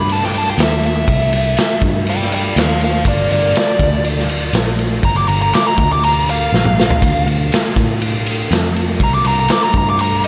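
A lush hall reverb gives this short cut from a longer piece a big arena sound, with the raw garage drum kit sitting up front in a bright, pumping stone room. It is gritty, swaggering blues rock with a southern rock streak, played by a power trio at 121 BPM in a straight 4/4. The nasal lead guitar, overdriven and picked through a parked wah with slapback echo, takes a solo throughout, ranging from Bb4 to D6 over changes that move from Gsus2 and C toward Gm, Bb/D and Bb5. Underneath, a vintage electric bass, dark, amped, foam-muted and round, holds the low end between G1 and A2. The saturated drums, with a punchy kick, medium-tuned snare, ride cymbal and toms under a rolled-off top, come in at 0.1 seconds and break into a fill from 6.5 to 7.0 seconds.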